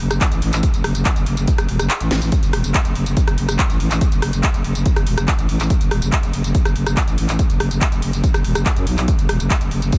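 A dry, dark-toned mix with the top end rolled off opens on a thick, growling FM bass pumping under sidechain compression, ranging from E1 to F#2 at 142 BPM in a straight 4/4, together with a layered electronic kit of handclaps, hi-hat, rim click, tambourine and a cracking snare re-recorded in a large room. This driving peak-time techno feels relentless, and a heavy kick enters at 0.2 seconds. The kick drops out between 1.9 and 2.3 seconds as a drum fill arrives at 2.1 seconds, in a short cut from a longer piece.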